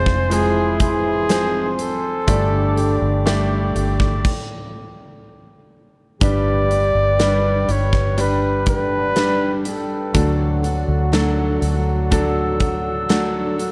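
Tender and hopeful, this slow pop ballad at 61 BPM in 4/4 moves with a straight feel through Fm, Gsus2, G and D, and is cut from a longer piece. An up-front flugelhorn carries the melody in a jazz style, with vibrato, a soft attack and scooped notes, until 10.6 seconds. Beneath it a clear concert grand piano gives intimate, polished accompaniment with deep bass, long sustain and audible action noise, while a fingerpicked steel-string acoustic guitar spins arpeggios in the background, its finger squeak just audible. A glass harmonica holds glassy, ethereal chords with a slow attack and audible beating, and a French horn section adds a vintage, classical-style second line in the background with light vibrato. A round, dark, foam-muted electric bass sits up front, and a huge arena drum kit with a punchy kick, medium-tuned snare, bright cymbals and a pumping hall sound joins at 0.1 seconds, with a stop from 4.2 to 6.2 seconds before the phrase begins again. 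The recording is dry, with little reverb.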